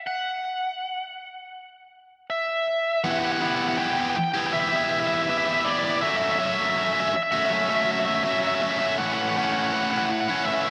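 A straight 4/4 pulse at 81 BPM carries this cinematic, cathartic rock passage in E dorian, tuned to A4 = 441 Hz and cut from a longer piece. A biting lead guitar opens the melody alone at 0.1 seconds, its bright, overdriven, picked tone sitting up front, dressed in slapback echo and digital delay as it moves between D5 and G5. At 3.0 seconds a tight, double-tracked distorted guitar enters with a picked riff spanning A2 to G4, bright and up front, as the harmony arrives on Em. The chords then move to F#m7 and settle on A5, with both guitars playing through to 10.7 seconds. A lush hall reverb with a long 2.6-second tail gives the whole recording a big arena sound.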